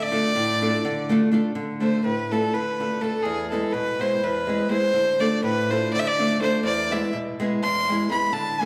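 A clear, earthy fiddle leads this fiery, virtuosic Balkan folk passage, a single bowed player up front with a light vibrato colouring its melody. A small, bright nylon-string guitar, fingerpicked and also up front, accompanies it throughout in a lopsided 7/8 metre with a straight feel. After a brief opening section, the fiddle takes a solo from 1.5 seconds to the close at 8.7 seconds, with the guitar continuing beneath it. The harmony moves between D minor and E major and back again. A wet recital-hall reverb places the pair further back in the room, and the passage is cut from a longer piece.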